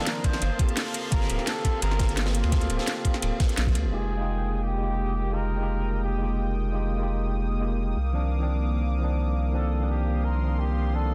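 A dense, heavily limited mix with light small-room ambience frames this soulful, rolling liquid drum and bass excerpt at 171 BPM. A veiled, breathy bucket-muted trumpet with light vibrato and scooped notes sings a distant, jazz-style melody through delay over a worn, slightly out-of-tune tine electric piano with digital delay and a lush, nasal, detuned sawtooth pad with chorus and sidechain pumping. A knocking, up-front electronic kick, a garage kit with a cracking snare and metallic hats, and a gritty breakbeat kit with dark cymbals play until around 3.8 seconds, while the deep, saturated sine sub bass continues beneath the Gm11, Fm11 and Cm11 chords.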